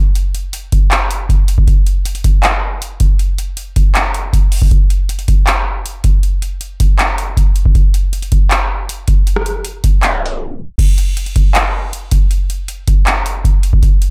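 A booming analog drum machine sits up front in this brooding, melancholic half-time hip hop excerpt, its deep kick, metallic hi-hats, handclaps, rim clicks and crash cymbal carrying the sound of a large room under light reverb, with a tape stop from 10.0 to 10.8 seconds before the final section.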